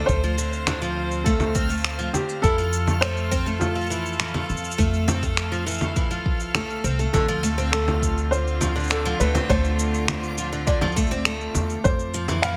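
A straight 4/4 groove at 102 BPM comes from a deep electronic kick and electronic shaker, finger snaps and congas, all re-recorded in a large room, under a woody, thumpy pizzicato upright bass on gut strings, in this delicate, hopeful folktronica excerpt cut from a longer piece. A felt-muted upright piano carries a mellow, intimate melody with tape echo, while a picked twelve-string acoustic guitar shimmers up front in octave-doubled arpeggios, finger squeak audible, also with tape echo. A distant, bowed string quartet holds intense vibrato chords in the background beside a reversed, detuned, dreamy swelling texture with its own reverb, all within light room reverb as Dm7 and Fmaj7 alternate, the second section arriving at 7.1 seconds.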